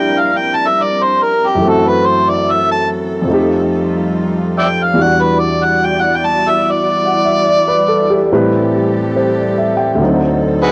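A gritty, amplified harmonica opens this romantic, late-night jazz ballad, joined from the first moment by a concert grand piano and a bowed cello section, all three playing through to the end of the 10.7-second excerpt. The harmonica takes the solo up front, its overdriven tone roughened further by a cassette-tape coloring, with light vibrato, tongue slaps and scooped notes shaping its jazz phrasing. Beneath it, the piano accompanies in an intimate, natural voice with deep bass, long sustain and audible action noise close at hand. The cello section sits lower in the balance, holding sustained chords played sul tasto with a soft attack and gentle vibrato. Over a swung eighth-note feel, the harmony drifts through lush extended chords, from Bb69 and F#m7b5 through Em9 and Am9 to a tense D7b9, all captured in a home cassette recording with light reverb.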